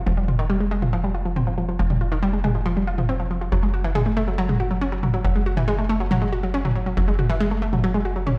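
A straight 4/4 pulse at 139 BPM drives this short cut from a longer piece of peak-time techno, hypnotic and driving from the first beat, with tuning set at A4 = 438 Hz. A tight sequencer bass opens at 0.0 seconds, moving only between F1 and Gb1, its punchy sawtooth and square-wave tone shaped by a filter pluck, a moving notch, a fast attack and a decaying tail that keeps it up front. An analog pluck riff enters at 0.1 seconds, ranging from Eb3 to Gb4, round and bright with detuned sawtooth and pulse waves, a noise layer, a quick attack and short decay, thickened by chorus and delay. Electronic toms join at 0.3 seconds, giving the groove an analog-flavoured percussive edge. The whole mix carries light reverb and digital ambience, sounding as if played on a big sound system in a bare room with stone reverb.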